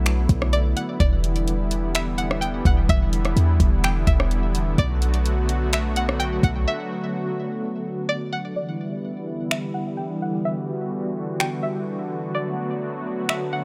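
A detuned sawtooth pad and a deep, boomy 808-style bass open this hazy, spacious cloud-rap excerpt in a half-time feel, the pad's smooth, bright chords moving between Bm7 and Em7 through chorus, tremolo, sidechain pumping and a low-pass filter. A twangy, full-bodied resonator pluck with chorus and delay carries the high melody, while an up-front, tape-toned R&B kit of knocking kick, hi-hat, finger snaps and rim click stops at 6.5 seconds, with the bass soon following, to leave a brief break. The drums return at 9.5 seconds under a filter sweep, and a barely audible electronic swell enters at 12.3 seconds amid light digital reverb.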